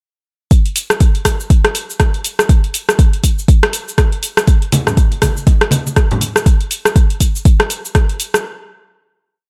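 A swung four-on-the-floor pulse at 121 BPM drives this short, hypnotic house drop, where a deep, up-front electronic kick anchors a layered, tape-warm deep house kit of programmed cabasa, closed and half-open hi-hats and rim click. Low-tuned, thick-skinned acoustic congas, vintage and band-limited, enter at 4.7 s and stop at 6.3 s, all in a dry, up-front sound.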